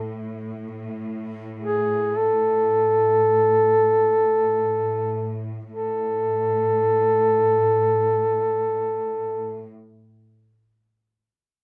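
A mellow duduk carries the melody up front across this short piece of Caucasian folk lament, hovering between G#4 and A4 with a soft attack, vibrato and scooped notes in a solo folk style. Beneath it, a bright, focused cello section holds a bowed drone on A2 throughout, lush and trembling with its own vibrato, sitting well below the duduk in level. The music moves in free time, slowing down over the first 5.7 seconds before a second section takes over until the clip ends, cut from a longer performance. The mood is longing and solemn. Light reverb surrounds a rough home demo mix.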